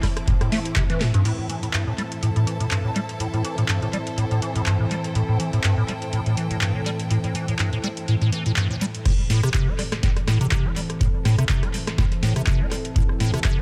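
Acid house at 123 BPM in A minor pentatonic, hypnotic and driving, built on a squelchy, resonant acid bass riff sitting up front with phaser, tube saturation and dub echo, over a warbling, nostalgic pad of sustained chords and a booming analog drum machine with crisp snare and metallic hats. An up-front electronic kick drives the drop at the start, falls out at 0.9 seconds, just before a drum fill and band accent at 1.0 seconds, and returns at 9.1 seconds. Meanwhile a clear, bowed studio string section with vibrato adds texture until 9.1 seconds, all set in an echo-heavy digital ambience, in a cut from a longer piece.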